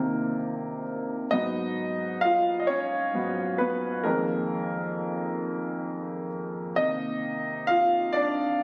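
A warm baby grand piano carries this short R&B fragment entirely alone, its worn tone ringing with long sustain and sitting up front in the sound. The mood is sultry and yearning, moving at a slow 44 beats per minute counted in dotted quarters within a straight 6/8 metre. Across its 8.6 seconds the piano spans F2 to F5, moving from Cm11 to Abm7 at 1.3 seconds, then to Fm7 at 4.0 seconds before settling back on Cm11 at 6.8 seconds. A slapback echo trails the piano, and a moderate studio reverb surrounds the instrument, while the whole was captured on a phone in the room. It is a brief excerpt cut from a longer piece.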